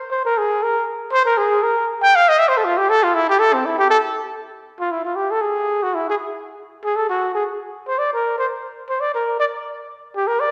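This jazz passage, cut from a longer piece, swings at a brisk 236 BPM in 4/4 with a sophisticated mood. A lone trumpet carries it from 0.1 to 10.5 seconds, sitting up front with a dark, breathy, almost whispered and intimate tone, soft attacks, scooped notes and light vibrato across a range from C4 to G5. A wet scoring-stage reverb with a 1.8-second decay surrounds the horn, giving the solo a spacious concert-room glow.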